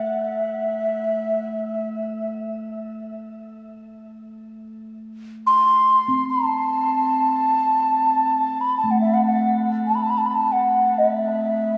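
Free-flowing and unmetred, this haunting, meditative world piece in A kumoi is an 11.8-second excerpt cut from a longer work. Up front, a bright, airy low xiao carries the melody with a crisp attack and vibrato, its end-blown bamboo tone bathed in shimmer reverb and a diffuse ambient delay. Beneath it, a bronze singing bowl struck with a felt mallet rings softly throughout, mellow and metallic with slow beating and its own shimmer reverb, all set in a wet recital-hall reverb with small-room ambience.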